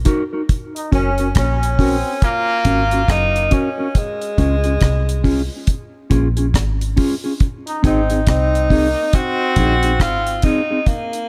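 Sunny and laid-back, this short roots reggae excerpt rolls along with a swung sixteenth-note feel over chords moving from Gb to Db and then Ab. A deep dub fingered electric bass sits up front with a round, dark, foam-muted tone, joined by a dry, acoustic reggae drum kit whose tight kick, hi-hat and rim click are also close and present. A mellow, clean electric guitar plays fingered accompaniment with a dusky edge and tape echo. The tenor saxophone carries the melody from 0.9 seconds with light vibrato and a punchy attack, heard as distant and roomy yet still forward, with tape echo on its line. A bright trombone adds a second line with scooped notes, set further back in the room and also treated with tape echo, all within a light reverb.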